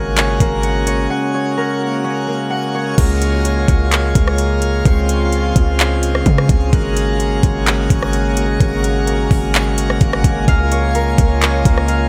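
Dreamy and blissful, this atmospheric cloud-rap excerpt in Db major moves at 128 BPM with a half-time feel. An up-front, brilliant pipe organ plenum holds full, baroque-voiced chords with sidechain pumping, alternating between Ab9sus4 and Db6. A ringing, fingerpicked concert harp arpeggiates through tape echo in the opening seconds and again near the close. A deep, boomy 808-style bass anchors the low end, while a reversed, granular, detuned texture swells in the background. An electronic R&B kit with knocking kick, metallic hats, handclaps, rim clicks and crash cymbal drops out between 1.1 and 3.0 seconds.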